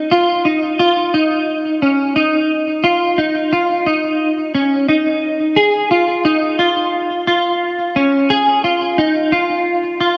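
Bathed in a long, wet plate reverb and a dark production, this blissful, ethereal dream pop piece at 88 BPM in straight 4/4 and Db major features a lone clean electric guitar from 0.0 to 10.2 seconds, picked and up front with a scooped tone and ensemble chorus and digital delay, moving into a new section at 5.6 seconds.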